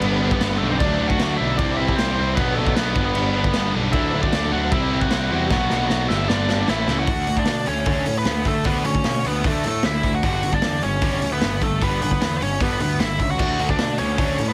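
Energetic and upbeat, this punk rock excerpt charges along at 152 BPM in a straight 4/4, moving from D mixolydian into D major at 7.1 seconds as a biting, overdriven lead guitar carries the melody up front over crunchy, tight distorted and very quiet double-tracked fuzz guitar riffs, a growly fuzz-picked electric bass, and a boomy, gritty garage drum kit in a small pumping room whose fill from 5.5 seconds leads into the second half, all with a dry, heavily compressed radio sound.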